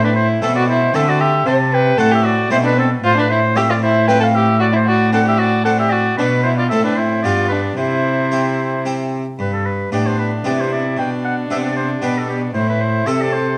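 Baroque-style classical sonata movement in a flowing, dance-like triple metre, where a clear oboe with light vibrato carries the melody over a gut-string violin's second line, a rich, reedy cello bass and a full, plucked harpsichord accompaniment with two sets of strings, all set in a moderate recital-hall reverb in this excerpt from a longer piece.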